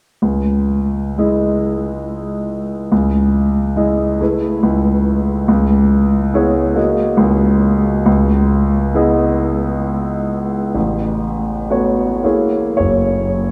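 Hazy and nocturnal, this impressionist solo piano excerpt drifts at 68 BPM in 3/4 with uneven, rubato beats, its harmonies moving through C# minor colours from C#madd9 to Amaj9, G#9sus4 and a closing F#9. A clear, open concert grand sits up front with deep bass, spanning F#1 to D#5 from 0.2 to 13.5 seconds. It rings inside a vast cathedral, where a 6.7-second reverb lets every chord hang in the air.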